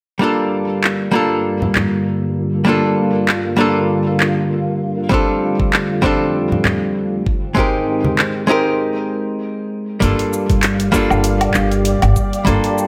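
Sunset chillout in G minor at 98 BPM with a swung 16th feel, this wistful, smooth excerpt opens with a clean, hollow-body archtop guitar picked up front through tape echo over Gm7, joined by a silky, dark string machine with ensemble chorus and a filter sweep, a tape-warm R&B kit of cabasa, handclaps, hi-hat and woodblock, and brief bright conga touches, while a knocking electronic kick arrives at 5.1 s as the chords move through F6 and Abmaj7, and after a break at 8.8 s a woody, growly pizzicato upright bass enters on G1 at 10.0 s as the harmony returns to Gm7.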